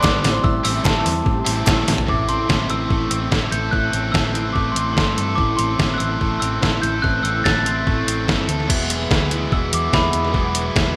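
A mellow, ringing glockenspiel played with rubber mallets carries the melody across this cool, bittersweet indie rock excerpt at 145 BPM in A dorian, taking over as a solo from 8.7 seconds when the harmony moves to Eadd9. Beneath it, two picked electric guitars drive the riff: one biting and overdriven with subtle chorus and delay, the other slightly broken-up and compressed through a small old amp with ensemble chorus. A dark, round hollow-body short-scale bass holds the low end, while a detuned 8-bit drum machine sits up front with a thumpy kick, medium-tuned snare, hi-hat, toms and crash, all bathed in gated reverb and marked by a fill at 1.9 seconds. In the opening moments only, a glassy, crystalline FM synth bell warbles in the background, a reedy overdriven combo organ with heavy vibrato holds very quiet sustained chords, and a hollow, close group handclap adds a faint accent, all dropping out by 2.0 seconds. 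The bright 1980s-style digital production places the band in a lush hall, with the chords shifting from Am7 to Am before the move to Eadd9.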